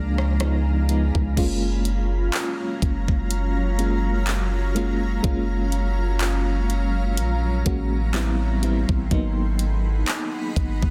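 A dense, heavily limited modern mix in digital ambience carries this smooth, romantic contemporary R&B excerpt, where a deep, mellow sine 808-style bass sits up front beneath a dark, full-bodied FM electric piano with tremolo and a cloudy, detuned granular pad that blurs bright chords through its built-in reverb and sidechain pumping, while a produced electronic drum kit with a knocking kick, warm hi-hats, handclaps, rim clicks and crash cymbal enters at 0.2 s over a swung feel as the harmony drifts from F#maj7 toward Am7 and G#m7.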